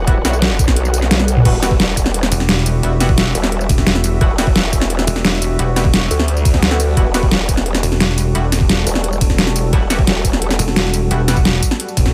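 A dry, aggressive mix opens this dark technical drum and bass excerpt in E minor at 174 BPM, where a growling, formant-filtered growl bass with overdrive sits up front over a knocking, tape-warm electronic kick and an overdriven dubstep drum kit with a deep snare, crash, ride, hi-hat, tambourine and toms. A deep, moody ambient pad holds sustained chords with sidechain pumping in the background, while a nasal, band-passed chord stab adds bright, decaying hits through delay. A drum fill at 1.1 seconds leads into the drop, and from 2.3 seconds a heavy, pulsing pluck wobble bass joins on a low E, giving the mechanical groove added weight.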